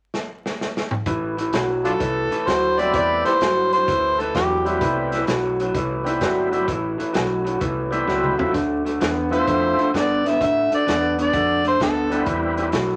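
A vintage drum kit with a punchy kick and rolled-off top opens this soulful, smoky electric blues shuffle with a fill, then a slightly broken-up, lo-fi electric guitar riff with spring reverb and a round, foam-muted fingered bass enter at 1.1 seconds, followed by a gritty, overdriven harmonica melody with tongue slaps and scooped notes at 1.8 seconds and a thick tonewheel organ with key click and slow rotary speaker at 2.8 seconds, the whole recording carrying vinyl crackle and faint mains hum.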